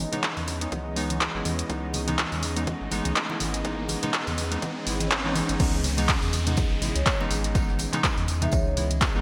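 Warm and moody, this deep house excerpt opens on a C#m9 chord voiced by a very quiet, dark ambient pad with a slow attack, beside an airy, breathy pad, detuned square-and-saw keys stabbing through chorus, delay and sidechain pumping, and a round, tube-saturated analog bass. An overdriven, punchy electronic kick and an up-front drum kit with claps, hi-hat and crash drive the swung groove while congas sit in the background and a riser builds from 1.8 seconds toward the drop at 5.6 seconds. There, the ambient pad stops and a very quiet brushed jazz kit enters, followed at 7.0 seconds by a brief, ringing vibraphone line with delay, all framed by a lush hall reverb and bright 1980s-style digital production.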